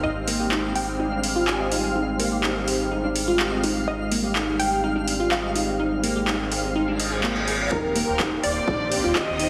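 Euphoric and expansive, this progressive house excerpt at 125 BPM in straight 4/4 sets a glassy, chorused wavetable arpeggio with a filter sweep, a lush, detuned unison pluck melody with delay, mellow supersaw chords grained by 12-bit sampler grit, a round, dark analog bass and a twinkling granular shimmer all pumping to the sidechain over Abmaj7, while an overdriven deep house kit with metallic hats and handclaps enters up front at 0.3 seconds, a reverse cymbal and riser climb from 6.9 seconds, and at 7.7 seconds the harmony moves to Eb6 as an intimate, sul tasto chamber violin section and a deep, overdriven electronic kick join the build-up, all drenched in a lush hall reverb and a heavily compressed, radio-like sheen.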